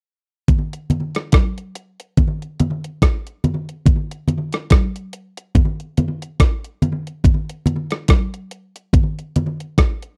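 A swung reggae groove at 71 BPM in 4/4 opens at 0.5 seconds, with a gated 80s digital drum machine laying down hi-hat, a thumpy kick and rim click, its sampler-style sound overdriven and re-recorded in a small room. Up-front congas with a thick, medium-tuned skin are struck with hard hands and carry a slapback echo, stopping at 9.6 seconds while the drums continue to 10.2 seconds. The mood is longing and smooth, and this short cut from a longer piece has a dry, close 1970s-style studio sound with light reverb.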